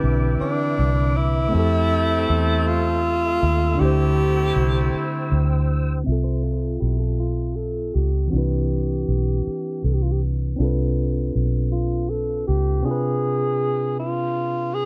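A breathy, close-miked tenor saxophone carries the melody up front from 0.4 s in this tender, warm R&B excerpt at 53 BPM in 6/8, over a clean tine electric piano, a dark, punchy muted fingered electric bass, a soft background tonewheel organ with chorus vibrato and slow rotary speaker, and tight vintage horn stabs with delay in the opening, before a filter sweep from 6.1 s ushers in a faint picked electric guitar with spring reverb and delay at 6.2 s.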